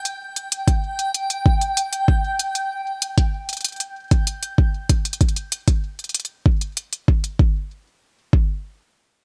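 Melancholic and glitchy, this IDM fragment moves at 96 BPM in a straight 4/4, set in a bright 1980s-style digital ambience. A dreamy, reversed swelling texture, granular and triangle-toned with lush chorus and built-in reverb, sits around G5 and stops at 2.4 seconds, while a smooth electronic hi-hat and a soft electronic kick, both overdriven, play up front. The hi-hat stops at 7.4 seconds as a new section begins, and the kick continues alone until 8.5 seconds.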